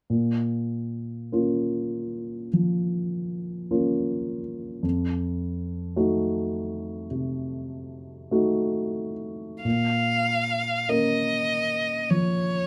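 A moderate studio reverb surrounds this short romantic classical duo for violin and grand piano, cut from a longer piece, its rubato phrasing carrying a melancholic, yearning mood. The warm grand piano sits up front with a short sustain, playing the accompaniment alone until the clear, focused violin enters at 9.6 seconds. The bowed violin sings its high melody with vibrato over the piano's return to the home chord.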